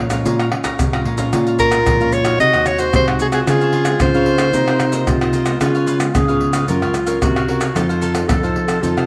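A straight samba-and-choro groove from maracas, pandeiro, tamborim and a deep surdo played with soft hands sits up front in this yearning, lively fragment, where a worn, slightly out-of-tune tine electric piano with light overdrive carries the bass, a crisp picked cavaquinho and a fingerpicked classical nylon-string guitar accompany in the background, a classical-style clarinet weaves a second line, and a jazz-style soprano saxophone with subtone and light vibrato sings the melody up front from 1.6 to 5.3 seconds, all set in a moderate echo-chamber reverb.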